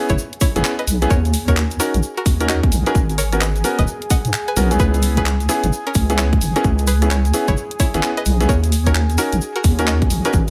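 Swung sixteenths drive this skippy, late-night two-step garage excerpt, where a tight electronic kick and a garage kit of handclaps, hats and rim clicks play alongside a grainy tube shaker, a deep, dark wobble bass sits up front, a clear, worn baby grand piano throws out dub-echoed stabs, a twangy, string-like resonator pluck carries the melody through chorus and tape echo, and a smooth, warbling analog pad pumps quietly in the background across the C#m7 to G#m11 changes.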